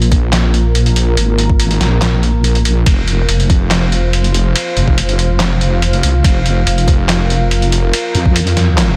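Deep dubstep at 142 BPM in a half-time 4/4 feel, this meditative, dark excerpt rests on a moody, warbling pad of sustained, detuned sawtooth chords with chorus and its own reverb, moving from Bb5 to F5 at 2.9 seconds. A heavy, saturated wobble bass with chorus sits up front, while a gritty, pitched-down, sampler-style trip hop kit of handclaps, hi-hat, ride cymbal and medium-tuned snare sounds re-recorded in a small room. A layered, knocking electronic kick enters at 0.1 seconds, all within a dense, heavily limited modern master with digital ambience.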